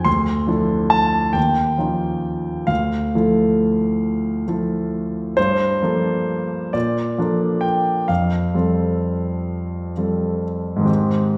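This impressionist classical solo piano piece feels serene and luminous, moving at about 44 BPM in dotted quarters in 6/8 with uneven, rubato beats in F major, tuned to A4 = 441 Hz. A concert grand plays alone throughout the fragment, which is cut from a longer piece and runs from 0.0 to 11.4 s, reaching from D2 up to C6. Its sound is clear and intimate, with deep bass, long sustain and audible action noise, placed up front in a polished, present image. The harmony drifts through Dm9, Eb9 and Dmadd9, then Gm9 at 5.4 s and Bbmaj7, before settling on Fadd9 at 8.1 s. A wet recital hall reverb of about 1.4 s, captured in a church or concert hall, surrounds the instrument.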